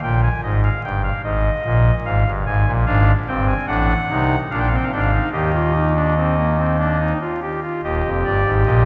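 Heard through a dark production with vinyl crackle and a deep church reverb, this short excerpt of a baroque-style three-part fugue in Eb major moves at 73 BPM in 3/4 with a driving, serious mood. A lone pipe organ on a soft reed oboe stop sits up front with a romantic voicing, ranging from Eb1 to Ab5 and touching that top Ab5 at 0.4 seconds. Its harmony passes through Fm and diminished colours to a Bb7 before settling on Eb at 5.3 seconds, and a brief new section begins at 7.8 seconds.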